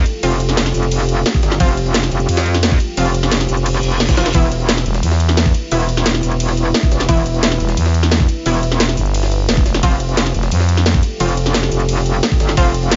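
A metallic, wobbling FM bass with tube saturation and chorus opens this tense, mechanical slice of dark technical drum and bass, pumping alongside a deep, warbling pad that sits in the background, while an up-front kit of cracking snare and metallic hats drives alongside a gritty, pitched-up jungle sampler kit with filtered hats and snare. Bold, punchy orchestra-hit-style stabs carry cassette-tape grit and dub echo, a knocking, tape-warm kick joins at 1.3 seconds, and a brief reverse cymbal rises from the back at 3.8 seconds. A thick, growling FM bass pushes to the front in short bursts, most fully from 7.6 to 11.0 seconds, as the harmony moves between Fadd9 and E5.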